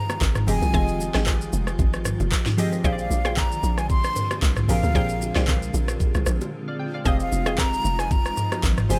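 Amapiano at 114 BPM in F dorian with a deep, late-night mood, where a breathy, close-miked concert flute carries the melody with vibrato and digital delay over glassy keys treated with chorus and phaser, a blurred granular pad sustaining Fm9 and Bb13 chords in the background, a hollow, bouncy log drum bass, an up-front electronic afro-pop kit with knocking kick, sharp snare and metallic hats, very quiet bongos and congas, and a woody mallet-like synth pluck adding stabs from 0.7 to 7.6 seconds, with a brief break at 6.5 seconds in a dry mix.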